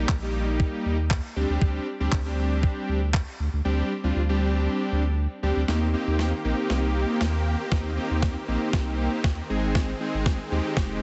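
A straight 4/4 pulse at 118 BPM drives this upbeat, carefree dance-pop piece in Eb major, where a crisp 8-bit drum machine with a thumpy kick, snare and handclaps sits up front alongside a round sine sub bass and a fat, warbling, vintage sawtooth polysynth, both bass and polysynth pumping from sidechain compression, until the drums fall silent between 3.7 and 5.7 seconds and then return with a fill as huge, lush, detuned supersaw chords join the pumping for a build-up, the whole heard through light reverb and a heavily compressed, radio-like sound.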